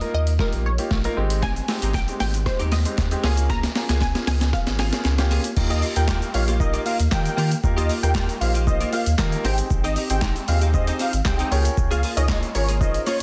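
A dry, dense and heavily limited mix carries this upbeat, carefree dance-pop excerpt, which opens on a build-up and drum fill. Up front are a gritty, pitched-down sampler-style kit with a thumpy kick and high-tuned snare, and a round, sine-toned sub bass. Beside them a clear, polished baby grand piano pumps with the sidechain, while a lush, detuned sawtooth pluck with chorus and delay carries the melody until 5.0 seconds. A clean, direct-recorded electric guitar riff joins at 1.4 seconds, with a very quiet, distant group handclap behind it. Just after the drop at 5.6 seconds, a thick, bold unison lead with vibrato and a sub octave enters on the melody at 5.7 seconds, pumping and trailing digital delay.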